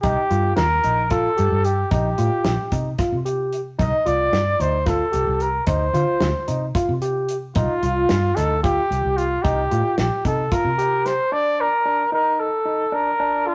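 Intricate and tense, this progressive instrumental excerpt in C dorian moves in 7/8 at 223 BPM (eighths), with a mellow, jazz-style trumpet carrying the solo melody up front with light vibrato, a barky, lightly overdriven tine electric piano playing arpeggios through a combo amp, a growly, foam-muted fingered bass, and a damped 70s drum kit with a dry, medium-tuned snare and tight kick, all set in a moderate stone room with a rough, tube-saturated rehearsal-room sound. Bass and drums drop out at 11.2 s, leaving trumpet and electric piano over a rootless Cm9 to the end at 13.5 s.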